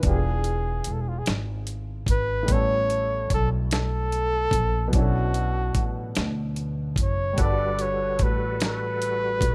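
Late-night and yearning, this excerpt of slow six-eight R&B in B minor moves at 49 BPM, counted in dotted quarters, with a straight feel. A dusty, sampler-style drum kit sits up front, compressed and gritty, with a thumpy kick, a medium-tuned snare and hi-hat, while a woody, growly pizzicato upright bass anchors the low end. A dark, mellow baby grand piano plays intimate accompaniment with short sustain and audible action noise, moving through E7b9, A9 and Bm11 before settling on Gmaj9. Leading from 0.1 seconds, a breathy flugelhorn carries the solo melody in a jazz style, present and close, with vibrato and scooped notes. At 7.4 seconds a bright, reedy tonewheel organ enters with sustained chords, clean with key click, chorus vibrato and a slow rotary speaker, all heard in the small-room ambience of a rough home demo mix.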